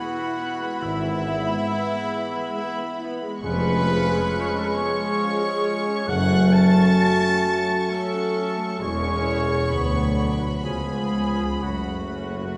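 A dark, intimate violin section carries the melody, bowed sul tasto with light vibrato and a soft attack, in this melancholic, solemn slow movement for symphony orchestra, cut from a longer piece and moving in a rubato three-four. Around it, a clear, floating second violin section, an airy silver flute kept very quiet, a smooth-topped oboe and a bright, present clarinet weave second lines, while a rich viola section and a vintage-toned bassoon supply accompaniment from the background. A very quiet French horn section and a trombone section hold sustained chords, and a soft-edged trumpet adds stabs. From 0.8 s a woody, lush double bass section, a mellow tuba and a warm cello section take up the bass, the strings drawn softly over the fingerboard. The harmony leans from major colour into a darker minor close, and the whole orchestra is heard from further back in a reverberant recital hall.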